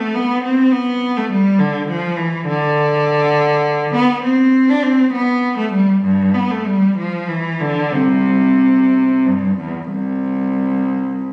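Heard from within a recital hall, the recording carries a moderate reverb of about 1.3 seconds that rounds off each note. A lone cello plays a baroque-style suite movement, cut from a longer piece, sounding from 0.0 to 11.3 seconds. The instrument sits up front, its bowed tone rich and focused, with vibrato colouring the line as it ranges from C2 to D4. The music moves in a lilting 12/8 with a rubato feel, giving it a flowing, dance-like mood. It's an intimate classical moment, one player alone in a resonant space.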